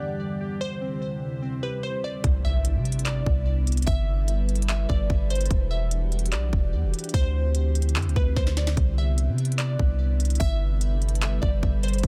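A dense, heavily limited modern master wraps this atmospheric cloud-rap excerpt in digital ambience, giving it a dreamy, floating mood over a half-time feel. It opens with a glassy FM pad holding slow-attack chords through ensemble chorus and built-in reverb, while a crystalline, detuned wavetable pluck carries the melody through chorus and digital delay. Alongside them, warbling lo-fi synth keys spin nostalgic arpeggios under a filter sweep. At 2.2 seconds the keys drop away and a trap drum kit arrives up front with a hard-clipped kick, sharp snare, crisp hats and handclaps. A deep, sine-based 808-style bass enters with it, its long notes decaying mellowly, as a background impact marks the change. The harmony cycles through Em9, D9sus4, Cmaj9 and G69, and a brief drum fill at 8.4 seconds nudges the loop along.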